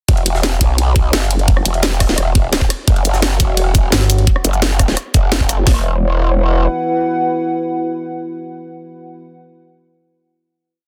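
A straight, broken-beat pattern from one layered electronic kit with a knocking kick and cracking snare, joined by a second tight, technical kit with shaker, rim clicks and its own cracking snare, drives this short, aggressive and mechanical dark technical drum and bass piece over a very quiet, gritty, pitched-up jungle breakbeat loop, while a saturated, wobbling growl bass with chorus holds the low end. A moody, wave-folded analog pad enters at 3.4 seconds, a thick FM bass cuts in with chopped phrases at 3.9 seconds, and the pad sustains into a final chord from 5.7 seconds, in a dense, heavily limited and dry mix.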